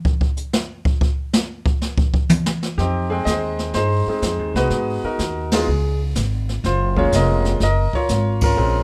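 This smoky, late-night jazz piano trio excerpt in F minor opens with a brushed drum kit playing alone, its dark cymbals, boomy kick and medium-tuned snare sounding natural in a small room, before the bright concert grand piano and woody pizzicato upright bass enter together at 2.8 seconds. The piano carries the melody with a brilliant, polished tone, audible action noise and long sustain touched by plate reverb, while the bass anchors a 124 BPM swing through Fm7, Abm7 and Gbmaj7 harmonies. The full band hits accents at 5.4 and 8.3 seconds in a rough home-demo mix with light reverb.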